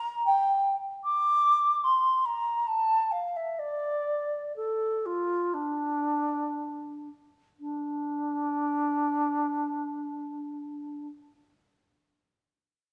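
This classical, baroque-style fantasia for unaccompanied flute unfolds in free time, with an introspective, flowing mood. A single baroque flute carries the whole piece from 0.0 to 11.1 s, ranging from D4 up to D6 with a wooden, airy tone and vibrato. Its tongued, expressive phrasing sits up front, yet the instrument also carries a slightly distant quality within a reverberant recital hall. The opening passage gradually slows until a new section begins at 7.6 s. This short excerpt is cut from a longer piece.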